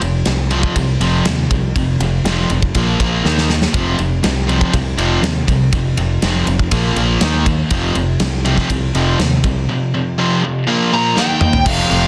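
Hard rock with a swaggering, energetic drive, cut from a longer piece and moving in a straight four. An overdriven semi-hollow guitar with a picked, hollow-body tone and a tight, bright distorted guitar play the riff together from the start, while a growly, punchy fingered bass sits beneath them over a cycle of F5, Bb5 and Eb5 power chords. A big acoustic rock kit, up front with a punchy kick, medium-tuned snare and a dark, rolled-off top, drives the groove across crash, ride and toms, with fills at 3.2 and 11.2 seconds. Near the end, a high-gain lead guitar pushes to the front with a dark, distorted melody from 10.9 seconds, and a double-tracked, compressed distorted guitar slips in at 11.7 seconds behind the band. The sound is dense and heavily limited, with light reverb and a small room ambience.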